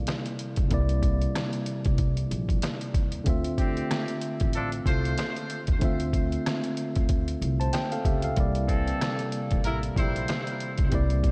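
Soaked in a lush hall reverb that gives the mix a dreamy haze, this moody, dark boom-bap hip-hop cut moves at 94 BPM with a 16th-note swing, circling C7 and Dm7. A clean, up-front tine electric piano with cassette-tape colouring opens at 0.0 seconds, joined by a compressed, pitched-down sampler-style drum kit with a thumpy kick, muffled character, medium-tuned snare, rim clicks and hi-hat, plus a woody, warm pizzicato upright bass from 0.6 seconds. A clear vintage horn section with light vibrato drops in stabs from 3.6 seconds, trailed by a diffuse ambient delay, in a passage cut from a longer piece.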